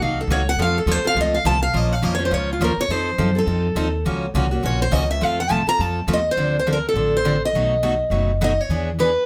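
A boxy, up-front parlour steel-string guitar carries the melody and takes a fiery, virtuosic solo through the first 6.4 seconds, its fresh strings ringing bright with audible finger squeak. This is a fragment of swinging acoustic jazz manouche: a full-bodied jumbo guitar supplies the accompaniment, and a woody, thumpy pizzicato upright bass on gut strings anchors the low end. The moderate studio ambience frames a chord progression that moves from Gb6 and Bbmadd9 to F7, then into a shift through Dm7, B7 and E7 near the end.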